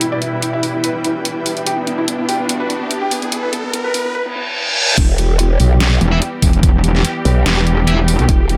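Light reverb and digital ambience frame this menacing, aggressive half-time heavy wobble dubstep excerpt: a felt-muted upright piano with audible action noise carries a mellow melody through dub echo over veiled, con sordino strings pumping under a low-pass filter, an ethereal detuned pad, a deep-snared dubstep drum kit and a riser and reverse cymbal build, until the drop at 5.0 seconds unleashes an overdriven knocking kick and a saturated growl bass, joined at 6.0 seconds by a metallic FM wobble bass and moments later by bright, scooped distorted guitar stabs in dub echo.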